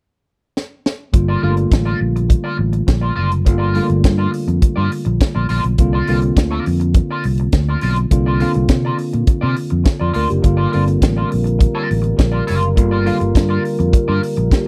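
A tight funk drum kit opens this celebratory, glamorous disco excerpt with a short fill at 0.6 seconds, its high-tuned snare and tight kick sitting up front at 103 BPM in a dry, close 1970s-style studio sound. From 1.1 seconds a punchy, amped fingered bass joins a bright, twangy wah guitar at the edge of break-up and a worn, slightly out-of-tune tine electric piano, moving from Gm7 to C9sus4. At 10.4 seconds, as the harmony returns to Gm7, a dark, distant French horn section adds sustained chords in a roomy classical style.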